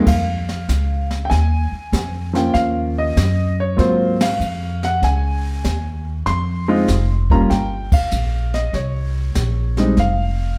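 Late-night and cool, this short jazz piano trio passage, cut from a longer piece, moves with a swing feel in 4/4. The concert grand carries the melody with a warm, intimate, natural tone and a deep bass, with the sound of its action audible up close. Beneath it, a pizzicato upright bass on steel strings sounds woody, growly and thumpy, while a brushed drum kit, entering at 0.1 seconds, colours the time with brushed snare, hi-hat, ride and crash, dark cymbals, a high-tuned snare and a boomy kick, all airy and polished. The harmony moves from Fm7 through Ebm9, Ab13 and Dbmaj7 to Gm7 and a bare C5 before dropping away, and the whole trio hits together on accents at 4.1 and 7.8 seconds. The instruments sit up front yet are heard from further back in a large studio, wrapped in a moderate reverb.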